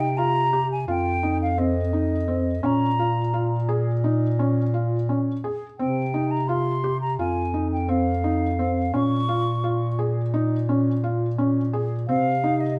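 A wet studio reverb with a short tail places this chamber fragment a little back in the room, while the three instruments still sit close and present. It is contemporary instrumental music in 9/8, moving at 171 BPM counted in eighths with a straight feel, and its mood is hypnotic yet urgent. A felt-muted upright piano plays soft, intimate arpeggios in the middle register, its hammer action audible beneath the notes. A bass clarinet carries the bass line in a classical style, smooth on top and rounded in tone. Above them, a silver concert flute sings the melody with a pure, hollow, metallic voice, using vibrato and tongued notes. The harmony cycles through C5, F5, Bbm7 and Cm across the roughly 12.8 seconds.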